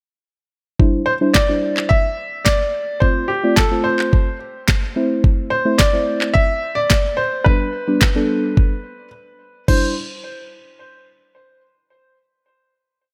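Dance-pop in C major at 108 BPM with a summery, upbeat mood. Up front, an electronic R&B kit drives a four-on-the-floor beat: a knocking kick, a sharp snare layered with handclaps, and crash cymbals. Alongside it, a deep, nasal chord stab with chorus and sidechain pumping plays syncopated chords through Cadd9, F, Am and G. Over this, an intimate grand piano with audible action noise and tape echo sings short motif-based phrases from 1.1 seconds. Everything sits in light reverb, and after a brief break at 9.1 seconds the piece closes on a final Cadd9 chord.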